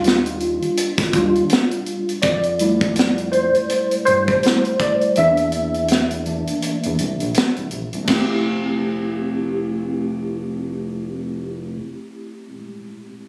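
This R&B and neo-soul excerpt has a soulful mood, with a sixteenth-note swing in common time. A worn, barky, slightly out-of-tune tine electric piano sits up front, playing clean through a combo amp with an ensemble chorus, and it carries a solo through the opening section, with a break partway through. Beneath it, a round analog bass blends sawtooth and sine tones into a deep, dark, sustained low end with a fast attack. A tight funk drum kit, acoustic and natural in a small room, also sits forward, with a high-tuned snare, tight kick, hi-hat and crash, and it stops at 8.3 seconds. The bass drops out at 11.8 seconds, the piano lasts until 13.3 seconds, and light studio reverb surrounds a sound captured on a phone in the room.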